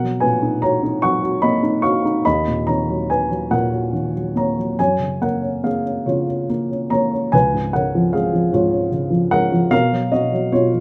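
A moderate studio reverb surrounds a dark, intimate baby grand piano placed up front, its mellow tone, short sustain and audible action noise carrying this calm, lyrical classical solo in F# major, which moves in a rubato 6/8 at about 46-52 BPM through Bmaj7, D#m7, F#maj7 and C#7 before returning to Bmaj7 at 9.7 seconds in a brief passage cut from a longer piece.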